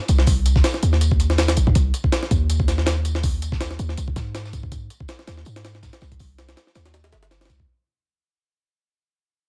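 Dark and atmospheric, this short drum and bass cut with a jungle lean runs at 162 BPM in 4/4, with a light swing on the sixteenths, and fades out across its whole 7.7 seconds. Up front, a deep, boomy 808-style bass built on a sine tone with a noise layer moves between G1 and Ab2, its fast attack giving way to a decaying tail. Sharing the foreground, a compressed, pitched-up jungle sampler-style kit supplies a thumpy kick, a high-tuned snare and hi-hat, with a gritty, tape-warm character and studio reverb. Further back sits a crunchy acoustic breakbeat kit of hi-hat, medium-tuned snare and tambourine, saturated and mid-forward with a rolled-off top, filtered and placed in a reverberant studio room. Studio ambience surrounds the parts, which all play from the opening moment to the end of the fragment.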